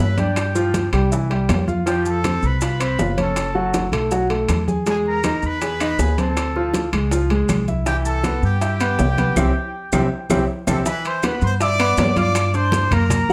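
Salsa at a brisk 160 BPM in C major, this joyful, danceable passage is cut from a longer piece and runs about 13 seconds. A bright, tight trumpet section carries the melody with light vibrato and a soft attack, while a clear, polished concert grand piano sits up front in the accompaniment, intimate and present, with audible action noise, deep bass and long sustain. The pizzicato upright bass is equally forward, woody, dark and thumpy on steel strings. Behind them, a thin-skinned conga with hard hands, round low-tuned bongos and woody claves fill the background, joined by grainy, mellow maracas heard close and dry and ringing metal-shelled timbales in a live room. A band accent arrives at 9.4 seconds with a drum fill under it, leading into a new section at 10.9 seconds where the harmony settles on Cmaj9 before moving to Gm7, all within a moderate studio reverb.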